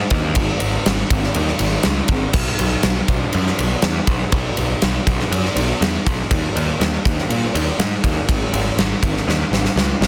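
A straight 4/4 pulse at 121 BPM drives this short shoegaze and dream pop rock passage in B major, tuned slightly low to A4 = 439 Hz, and its mood is blissful yet wistful. A picked electric bass starts at 0.0 seconds, its overdriven fuzz tone growly and up front as it moves between G#1 and A#2. The huge arena drum kit joins at 0.1 seconds with a punchy, softly clipped kick, a medium-tuned snare, and bright crash and ride cymbals, set in a pumping hall sound. A drum fill closes the passage from 9.3 seconds. The mix carries little reverb overall and is heavily limited into a dense, modern master, and the whole thing is cut from a longer piece.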